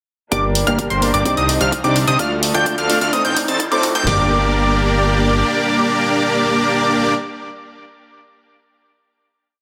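At 0.3 s a powerful, anthemic festival progressive house build in G minor at 128 BPM opens at once: a huge, thick supersaw riff sits up front in pulsing gated chords under a filter sweep; a catchy, plucky lead with a tape tint doubles the chords an octave higher in arpeggios; a fat analog bass, the supersaw, the lead and a dark, mellow grand piano with audible action noise all pump to the sidechain. An earthy, distant chamber string pad sustains beneath them, while a four-on-the-floor house kit with a punchy kick and bright hats, plus a layered electronic hi-hat, drive toward a very quiet riser and drum fill that give way at 4.1 s to a final G minor chord, the bass stopping at 5.4 s.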